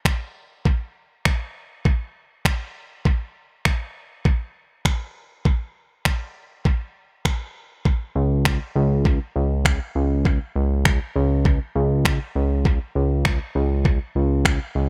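A knocking, tape-warm electronic R&B drum kit of finger snaps and kick sits up front under dub echo in this energetic, confident dance-pop excerpt at 100 BPM, joined at 8.2 seconds by a fat, saturated, detuned sawtooth bass with a filter pluck and sidechain pumping, all set in an echo-heavy digital ambience.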